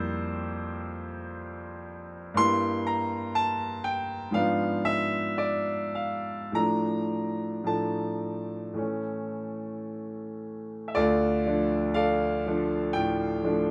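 A brilliant, up-front concert grand piano with deep bass and long sustain carries this bittersweet, passionate romantic character piece, played with free-flowing rubato in light reverb, moving through diminished harmonies before arriving at a new section at 11.0 seconds in a brief fragment cut from a longer work.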